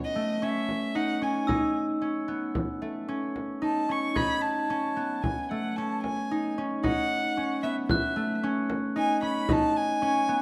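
Close, detailed microphones in a moderate recital hall capture this hopeful, shimmering fragment of contemporary chamber music in 5/4 at 113 BPM, resting on an Amaj7 chord in A lydian. Up front, a dark, intimate violin carries the melody, bowed sul tasto with light vibrato and a soft attack, while a fingerpicked concert harp rings out arpeggios beneath it and a deep, saturated frame drum played with soft hands joins at 0.7 seconds. In the background, a metallic, bell-like glockenspiel struck with hard plastic mallets adds texture from 1.5 to 8.7 seconds, heard in a boxy small-room sound.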